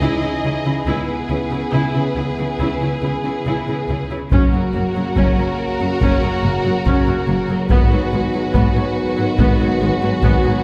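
At a slow, straight 71 BPM in 4/4, this dark, epic orchestral film cue in C# dorian opens with bowed strings: a soft-edged violin melody sits back in the mix over a focused second violin line, smooth violas, and cellos and double basses holding down a lush low end, while a dark, distant French horn section sustains chords beneath. At 4.3 s the harmony moves from C# minor toward F# and G#m7 as mellow trombones join the held chords and close, heavy-stick taiko drums enter. A roomy scoring-stage reverb places the ensemble toward the back of the hall.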